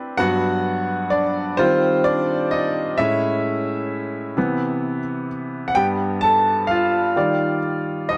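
A clear baby grand piano plays alone in this brief, sensual R&B excerpt, moving slowly at 43 BPM in a straight 6/8 across a range from G2 to A5. Its intimate, natural tone sits up front with long sustain, audible action noise and a slapback echo, drifting through lush chords such as Gmaj7, Ebmaj9, Amaj7 and Cmaj7 before settling on Gadd9 and Ebmaj9 by 8.2 seconds. Light reverb and a dark, warm production wrap the piece in a late-night glow.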